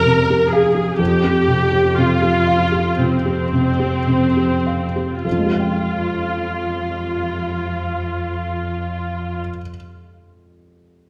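A felt-muted upright piano, a viola section and a cello section open together in this sorrowful, bittersweet cinematic passage in F minor, cut from a longer piece. It moves with a rubato feel at around 50-65 BPM in 4/4, slowing down through the opening stretch over an Fsus2 chord before shifting to Fmadd9 at 5.3 seconds. The piano sounds soft, mellow and intimate, with its action noise clearly audible, spanning from F2 to G5 as accompaniment. The violas carry a lush, expressive bowed line with vibrato and portamento, while the cellos hold a focused low F2 with a smooth top beneath them. Both string sections stop at 9.4 seconds, leaving the piano to sound until 11.1 seconds. A moderate scoring-stage reverb surrounds the ensemble, and the instruments are tuned to A4 = 438 Hz.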